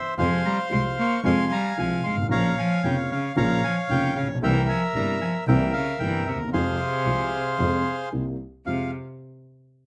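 A bandoneon opens this melancholic, dramatic tango fragment, taken from a longer piece, its reedy, airy melody sitting up front in the high register with a slapback echo. At 0.2 seconds a bowed cello, a concert grand piano and a bowed double bass enter together. The cello carries a second line in a gut-string, period-style tone that is boxy with light vibrato, and it shares the bandoneon's slapback echo. The piano gives mellow, vintage accompaniment with deep bass and short sustain, while the double bass, a single player, plays the bass line with dark, expressive vibrato and portamento. The rubato feel moves through F minor, B-flat minor and C7 before returning to F minor, and the dry outdoor sound has little reverb.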